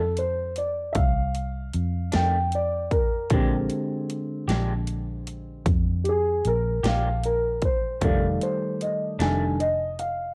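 Laid-back yet rollicking, this slow blues in a straight 12/8 is a short cut from a longer piece, caught as a home recording on cassette with a light reverb. A dark, mellow grand piano sits up front and carries the solo across the whole passage, moving over chords from F6 to Bb13 at 3.3 seconds and on to F13 at 8.0 seconds. Underneath, a vintage muted fingered electric bass gives a round, foam-muted, amped low end that also sits close to the listener. An electronic dubstep drum kit enters at 0.2 seconds with a punchy kick, a huge snare and metallic hats, its layered, produced sound softened by tape. Further back, an electric guitar through a small old amp adds slightly broken-up, compressed, lo-fi colour with harmonic tremolo, dropping out at 9.4 seconds.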